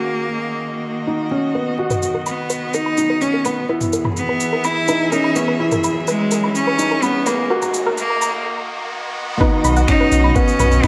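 Hopeful and tender, this piano and strings electronica cut moves at 126 BPM in B major, with a bright, up-front bowed cello singing the melody over a felt-muted upright piano riff that sounds mellow and intimate, its action noise audible, both carrying tape echo. A smooth string quartet holds sustained chords under sidechain pumping and a filter sweep. From 1.9 s a soft, round pluck adds chorused arpeggios that sweep too, alongside an organic electronic kit of finger snaps, shaker and toms, and a very quiet, detuned saw bass that rumbles joins them just after. An electronic riser builds in the background from 5.8 s through a short break, and the drop at 9.4 s lands on a compressed, muffled, thumpy kick, all set in a moderate recital-hall reverb.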